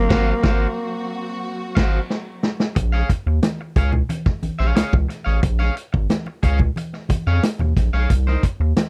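This sly, funky cut from a longer piece moves at 90 BPM in a straight 4/4, centred on Bb minor. It opens on an Ab13 band accent, with a growling, breathy tenor saxophone delivering a raspy subtone melody over lush, bowed strings holding sustained chords. The saxophone drops out at 2.1 seconds as a drum fill leads into a Bbm7 groove at 2.8 seconds, with the strings ending just before it at 2.7 seconds. From there, the round, deep analog bass and the vintage kit, with its punchy kick, medium-tuned snare and dark cymbals, carry the tune up front. A twangy, slightly broken-up electric guitar picks out accompaniment throughout, while thin-skinned, low-tuned congas join in the background at 3.4 seconds, before a Cm7 arrives near the end. The sound is dry and close, like a 1970s studio session.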